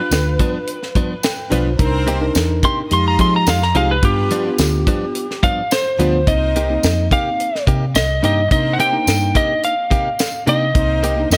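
A straight-eighth soul blues groove in 4/4 at 107 BPM, this brooding, smoky excerpt in C minor is driven by a tight funk drum kit with a high-tuned snare, hi-hat and tambourine and a dark, foam-muted electric bass sitting up front. A slightly broken-up slide guitar, played with fingerpicks, carries the melody as a solo through the first 6.3 seconds over G7, Cm7 and Fm7 changes. A clean electric piano through its built-in speakers adds a brief fill at 1.0 seconds, while crisp direct-recorded guitar stabs and a bowed, vibrato-rich string section in the background fill out the small-room sound.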